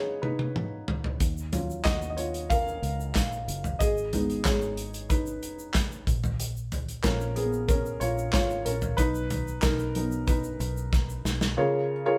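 A straight 4/4 pulse at 93 BPM drives this hopeful, uplifting piano-driven pop excerpt, which opens with a fill on a loose, small-room acoustic indie drum kit of kick, medium-tuned snare, toms, hi-hat and handclaps, with the tight kick and the whole kit sitting up front. A dark, mellow upright piano with a woody, short-sustained tone is close and forward throughout, carrying a solo over harmony that moves from Abm through Ebm7, Bbm and Cb to a closing Db6. At 1.2 seconds a fingered electric bass enters, warm, direct and punchy with a foam-muted thump, alongside a grainy, bright egg shaker tucked far back in the mix. A second drum fill arrives at 10.9 seconds, and the piano rings on briefly after the band stops. The group sounds like it is playing live together in one room, with a moderate studio reverb giving the sound a natural sense of space.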